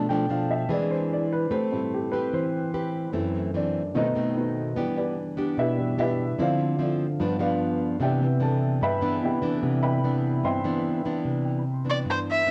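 This short cut from a longer bossa nova piece has the homespun character of a cassette home recording, set in a noticeably wet studio ambience. The mood is sophisticated and sunny, in a straight four-beat feel. A dark, fingerpicked nylon-string guitar plays classical-style accompaniment up front throughout, while a warm, present baby grand piano, touched with plate reverb, carries a solo over the opening stretch through 11.2 seconds. The harmony moves through a jazzy chain of rich extended and altered chords, from Bm7b5 and Eaug7 through Em7, Dm9 and G7, before settling on Cmaj9. Shortly after the turn into a new section, a single bowed erhu enters at 11.9 seconds with a focused melody, sung out with vibrato and portamento and sitting up front in the mix.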